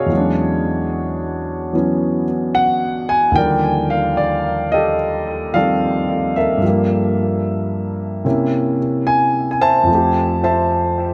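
Drenched in a wet spring reverb with a dark, echo-heavy sheen, this smoky, cool solo jazz fragment at 74 BPM in a swung 4/4 features an intimate, up-front concert grand piano with audible action noise, deep bass, long sustain and analog delay, drifting through lush chords from E13 and Ebmaj9#11 to Gm9 and C7b9 before settling on Fmaj9.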